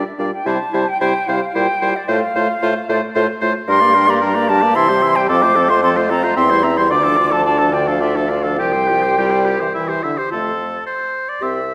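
In a 3/4 at 111 BPM with a rubato feel, this quick classical-period movement for wind quintet in F major sounds graceful and cheerful. The concert flute carries the melody up front between C5 and D6 with an airy, tongued tone, expressive vibrato and a slightly distant quality. Beneath it the close-miked oboe sings a second line with vibrato, while the clarinet and French horn supply classical-style accompaniment, the horn entering each note gently. The bassoon anchors the bass from C2 to C3 with a mellow, rounded sound. Harmonies move from C through Gm, Dm and a Csus4 before settling on F at 10.3 s, where a new section begins. A lush scoring-stage reverb surrounds the ensemble in this short fragment of a longer piece, which ends at 11.7 s.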